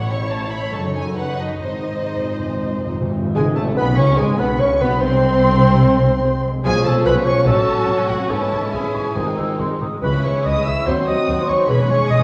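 Heard through worn, warbling old cassette tape with pitch drift and a wet recital-hall reverb, this fragment of a dramatic, restless romantic orchestral movement pushes forward with urgency and a rubato feel. Lush, vibrato-rich violins carry the melody over a second violin line, intense violas, ringing thumb-plucked harp arpeggios, expressive double basses with portamento and very quiet cellos, while round soft-mallet timpani enter at 1.6 seconds. Airy flute slips in at 3.3 seconds, and at 3.4 seconds a band accent ushers in mellow oboe and clarinet, a vintage-toned bassoon, sustained chords from a very quiet French horn section and a dark, dry tam-tam, with the timpani returning at 9.2 seconds.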